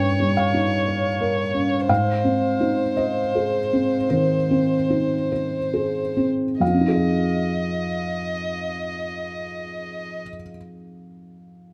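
Close, detailed microphones and light reverb capture this fragile, longing cut from a longer neoclassical piece for piano and strings in F minor, moving in a rubato 4/4 at 45-61 BPM and slowing down over its first 6.6 seconds. A felt-muted upright piano, soft and intimate with thick felt and audible action noise, carries the accompaniment through Eb7/G, Ab and Fm7 until 11.7 seconds. A single dark, woody violin sings a bowed melody with vibrato and stops at 10.2 seconds.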